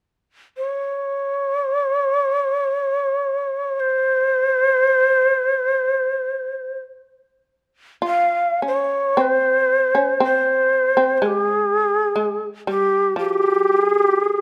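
Japanese traditional chamber music in free time, calm and austere, this short passage opens with a breathy, mellow shakuhachi carrying the melody up front, its crisp, chiffy attack and vibrato caught by close, detailed microphones. At 8.0 seconds a plucked, buzzing shamisen enters beneath it with a percussive, powerful second line, sitting lower in the mix. Light reverb gives the pair a little air as the music moves into a new section at 9.2 seconds.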